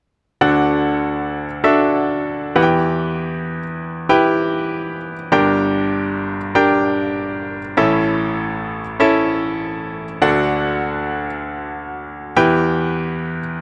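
Uplifting and anthemic, this pop piece features a solo grand piano with a brilliant, polished, up-front tone and short sustain, playing from 0.4 to 13.6 seconds through chords of D, Em, Gm and A under a moderate plate reverb, before a second section begins at 10.2 seconds and returns to D and Em.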